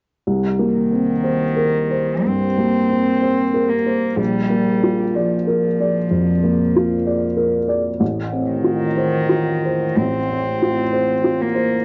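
Rubato in 4/4 at about 62 BPM, this longing, fragile neoclassical piano-and-strings fragment in C dorian opens at 0.3 seconds with a dark, woody upright piano carrying the accompaniment over Cm7, Bb and F/A, its action noise and long sustain close up front, before a lone bowed cello enters at 0.7 seconds with a pure, floating sul tasto second line, both heard through the dulled highs of a cassette home recording in a small room with light reverb.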